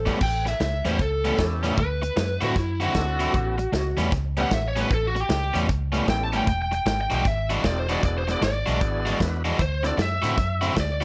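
Swaggering and gritty, this electric blues shuffle in A mixolydian swings at 154 BPM, a short cut from a longer piece. A lead guitar through a small cranked amp takes the solo from 0.2 seconds to the end, its overdriven, picked tone sitting up front and ranging from E4 to A5. Beneath it, an overdriven semi-hollow guitar plays a bright, hollow-bodied riff, while a vintage foam-muted fingered bass adds a dark, round punch from E1 to A2. A tonewheel organ fills in a thick, lightly overdriven accompaniment through a slow rotary speaker until 10.0 seconds, and a natural country drum kit drives the shuffle with a punchy kick, medium-tuned snare, hi-hat and crash. The changes move through A9, D9 and E9, and light reverb gives the band a small-room feel.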